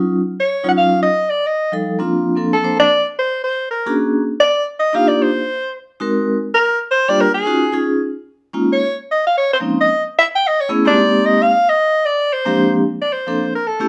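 A moderate studio reverb gives this short jazz fragment a roomy, lightly ambient sound. It swings briskly at 224 BPM in 4/4, starting in Bb major before moving to Eb major at 4.2 seconds, with a mood that is warm and swinging. A vibraphone played with medium hard mallets carries the accompaniment throughout, sounding metallic, bright and ringing, with a fast motor vibrato shimmering in each chord. The soprano saxophone enters at 0.4 seconds with the melody, its tone warm and vibrato-laden, scooping into notes in a classic jazz manner. The harmony moves through rich extended and altered chords, such as Ebm9, Bb7alt, Db69 and Bb13, with brief chordless passages between some changes. At 12.8 seconds the saxophone steps forward into a solo over a Bbmaj9 chord before the fragment cuts off.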